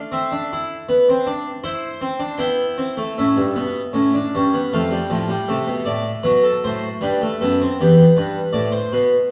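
In a straight, even 4/4, this stately, elegant excerpt from a baroque-style four-part fugue features a solo French-style harpsichord, brilliant and plucked with a full three-string sound caught close and up front, set against the lingering reverb of a recital hall heard from further back, as the opening passage gives way to a new section at 3.2 seconds.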